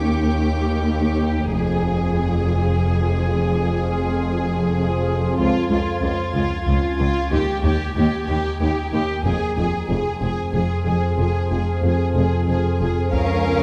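A tense, eerie suspense film cue in F minor at 93 BPM in 3/4 opens with a violin section carrying the melody over clear, distant cellos, warm bowed double basses and a calm, organ-like sine drone treated with ensemble chorus, built-in reverb and phaser, while high violins shimmer in the background at 0.0, 5.4 and 13.1 seconds. The harmony moves from Eb to Fm and on through Db and Eb, set in a dark production with a scoring-stage reverb. At 13.1 seconds a second violin line, a viola section and saturated, compressed taiko drums struck with hard sticks join just before this cut from a longer piece ends.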